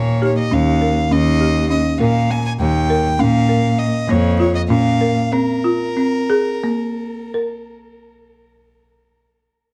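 A restless, pensive fragment of contemporary chamber music in 7/8 and Bb dorian opens all at once: a rich, intense bowed cello bass sits up front with vibrato, under woody, dry, rustic marimba arpeggios and a floating, airy violin melody played sul tasto with tape echo, as the harmony moves from Eb7 to Bbsus2. A very quiet, bell-like celesta, slightly out of tune and vintage in tone, sounds a single delicate note early on, the cello stops at 5.2 seconds, and the pulse of 165-203 BPM in eighths slows from 3.2 seconds onward. The production is dark and warm, with moderate studio reverb and a faint mains hum.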